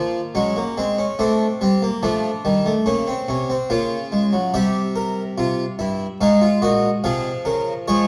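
A solo harpsichord opens this solemn, contemplative fragment of a baroque-style four-part fugue, cut from a longer piece. It moves at a steady 72 BPM in straight 4/4, tuned to A4 = 436 Hz. The French-style instrument, with two sets of strings, sounds plucked, full and dry, miked closely and placed up front across a range from G2 to F5. The harmony begins on B-flat minor and passes through A diminished before returning to B-flat minor. At 4.5 seconds a second section turns to C7 and settles on F minor over A-flat, running until 8.1 seconds. A moderate recital-hall reverb and a dark production lend the whole a grave, inward air.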